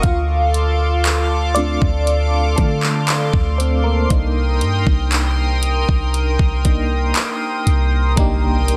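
Tender and romantic, this slow contemporary R&B excerpt at 59 BPM moves from Dm7 to Cm7 as a mellow FM electric piano with tremolo and phaser carries the lead over a shimmering, bright chorused pulse-width pad with sidechain pumping, a deep, boomy 808-style bass and an up-front electronic drum kit of knocking kick, handclaps and hi-hat, before an inharmonic synth chime with tape echo rings in the background at 8.2 seconds and a very quiet electronic impact lands at 8.3 seconds, all in a dense, heavily limited modern master.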